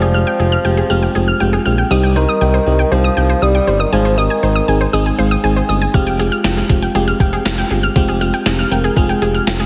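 Melancholic and nocturnal, this synth-pop excerpt in F minor moves at 119 BPM, opening with a mellow, distant bassoon melody with light vibrato and delay over a dreamy, detuned FM electric piano with a soft pad layer, bright, round chorused analog pluck arpeggios, and a smooth sawtooth synth bass held up front. The bassoon falls away at 4.9 s, the electric piano plays a fill, and at 5.9 s a gated 80s digital drum machine enters up front with a thumpy kick, hi-hat and a gated reverb snare carrying a tape-like glow. The chords move from Fmadd9 through Cm and Ab back to Fmadd9, and the mix sits in a lush hall reverb with a heavily compressed, radio-like sound.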